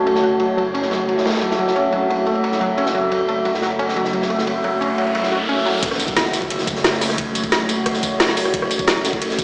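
The metallic, inharmonic drone stands out from the first moment, an eerie FM tone holding sustained chords over F# minor with a chorused, warbling shimmer that pumps against the sidechain. This is dark, aggressive technical drum and bass at 177 BPM in a straight 4/4, cut from a longer piece, with a swirling, phased saw bass sitting low and thick beneath it. A bright, punchy unison pluck runs arpeggios under a filter sweep with dub echo, while a nostalgic, lo-fi tape-like pad warbles in the background and a gritty, saturated breakbeat kit with dark cymbals ticks along on ride and snare. A riser builds from 4.5 seconds into the drop at 5.8 seconds, where the pad and pluck stop and an up-front drum and bass kit arrives with a woody snare, metallic hats, rim click, tambourine and crash, joined by an overdriven, knocking electronic kick and an impact. The whole mix is bathed in a lush digital hall reverb, yet it sounds as if played on a big sound system in a bare stone room through a small speaker.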